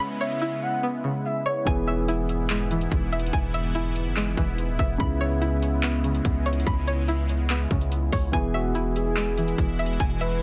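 Trap hip hop at 144 BPM with a half-time feel in E major, this triumphant yet dreamy excerpt opens with a mellow, dark baby grand piano, an airy, evolving pad with a chorus effect, and twangy, nasal resonator-pluck arpeggios with chorus and delay, while a smooth portamento lead with vibrato glides in at 0.2 seconds, until at 1.7 seconds a punchy, heavy 808 bass and an overdriven trap kit with a hard-clipped kick, bright hats and handclaps hit up front, the gliding lead returning at 8.5 seconds over a dense, heavily limited modern master.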